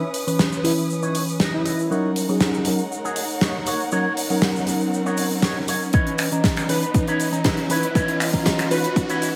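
A straight nu-disco groove with a gated 80s kit of snare, hi-hat, shaker and finger snaps drives this groovy, sleek build-up, with a punchy, overdriven electronic kick arriving at 5.9 s. Mellow tine electric piano with tape echo and dark, woody chamber violins, both pumping to the sidechain, hold the harmony over C#m9 and D#m7. Meanwhile a twangy, clean-picked envelope-filtered guitar riff with 12-bit grit joins the violins under a filter sweep, a thick detuned sawtooth unison lead states the melody in two short phrases, and a background riser climbs from 1.0 s in a small, lightly reverberant room.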